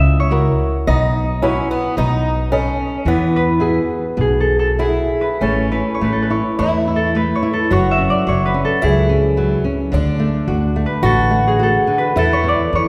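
Fado-style ballad in a tender, nostalgic mood, moving at 107 BPM in 4/4 with a rubato feel, starting in E major and shifting to A major at 5.4 s. A ringing, up-front concert harp carries the melody over a boxy, shimmering, octave-doubled twelve-string acoustic guitar with a fingerpicked swing second line, while a dark flamenco guitar with audible finger squeak supplies the accompaniment. A woody, warm pizzicato upright bass with steel strings sits up front beneath them, and the whole excerpt is bathed in the wet reverb of a church or concert hall.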